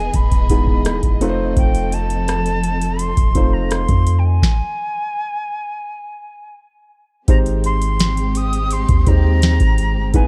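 Cut from a longer piece, this smooth, dreamy contemporary R&B opens with an airy, distant jazz flute melody with vibrato and a crisp chiff over a soft felt-muted upright piano, lush bowed symphonic strings that pump against the beat, and a deep, up-front sine 808 bass, joined at once by a booming analog drum machine with a tonal snare, rim clicks and metallic hats, all at an easy 84 BPM in Ab major with a dark, warm small-room sound and a stop from 4.4 to 7.3 seconds before the groove resolves onto Abmaj7.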